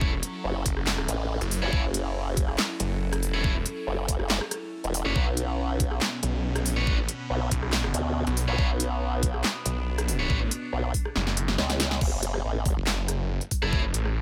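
Menacing and heavy, this half-time wobble dubstep drop at 140 BPM in F# minor is cut from a longer piece and moves from F#m7 to Bmadd9 before settling on F#m at 12.0 seconds. A growling, detuned sawtooth bass and a saturated formant-sweep wobble bass with chorus sit up front over an overdriven, knocking kick and a punchy big-room kit of crisp hats, handclaps, rim clicks, snare and crash, with a drum fill just before the shift. Above them, picked high-gain guitar stabs carry 12-bit sampler grit and digital delay, while a morphing, phased wavetable pad pumps under sidechain until 12.0 seconds, all in a dry, close mix.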